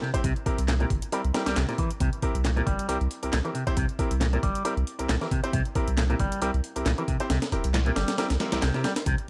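A thick, saturated sub bass sits up front in this energetic, funky breakbeat excerpt, its deep triangle tone arriving with a fast attack and sustaining low beneath the groove from 0.2 seconds. The main beat comes from a compressed, pitched-up breakbeat sampler-style kit with a thumpy kick, high-tuned snare and hi-hat, gritty and tape-warm in a small room. A punchy analog drum machine adds handclaps and hi-hat further back in the mix. An electric guitar with an envelope filter plays a clean, picked, twangy riff trailed by dub echo, while a clear, smooth grand piano punctuates with short stabs roughened by vintage 12-bit sampler grit and echo. At 136 BPM in 4/4 with a light swing on the sixteenths, the piece sits on a C7 chord, and the overall sound is dry and close.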